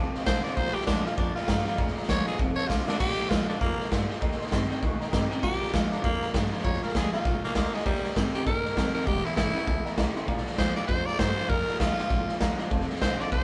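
Retro and upbeat, this swinging rockabilly excerpt features a raspy, growling tenor saxophone up front over punchy garage drums, a thumpy upright bass, a twangy, slightly broken-up electric guitar riff, a boxy upright piano and a very quiet picked dreadnought acoustic guitar, all captured as a band playing live in one room with moderate reverb and a rolled-off top.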